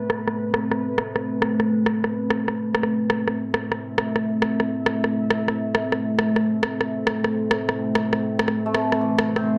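Heavy and cinematic, this short cut from a longer half-time drum and bass piece rests on a deep, moody ambient pad of warbling, chorused sawtooth chords held on an Amadd9, up front with a slow attack and long release. A shimmering, hammered santur plays arpeggios coated in vintage 12-bit sampler grit and delay, heard at the opening and returning at 8.7 seconds. Meanwhile a tape-tinged electronic rim click drives the drums, with low-pass filtered hats and snare in a small room, and a wet digital room reverb glazes the whole mix.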